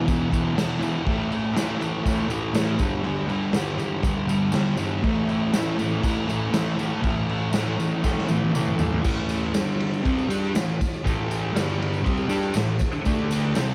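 Recorded at home on cassette in a small room, this raw, swaggering garage rock excerpt at 120 BPM in A minor puts a thick, double-tracked fuzz guitar up front, its dark, picked riff moving through power chords from E5 to A5 and G5. A saturated, gritty drum kit with a punchy kick, medium-tuned snare and rolled-off top drives the straight 4/4 groove alongside crash, ride and toms, with a jingly tambourine sitting close and dry in the background. A drum fill from 8.0 to 9.0 seconds leads into a second passage where the guitar shifts between G5 and A minor before landing on D5.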